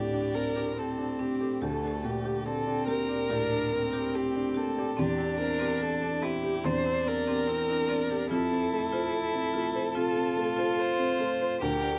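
Neoclassical piano and strings in 4/4 with a rubato feel, this passage is cut from a longer piece and carries a longing, reflective mood. A single dark violin, bowed with vibrato and placed up front, carries the melody. Beneath it a solo cello plays a second line, warm and pure, with a floating, smooth top from its sul tasto bowing. A felt-muted upright piano gives soft, intimate accompaniment across a broad range, its boxy, mellow tone carrying audible action noise. Further back, a marimba played with medium hard mallets on rosewood bars adds warm, woody arpeggios, while the harmony moves from D7sus4 through Gmadd9/D and Cadd9/E to Fmaj7 at 8.3 seconds under light reverb.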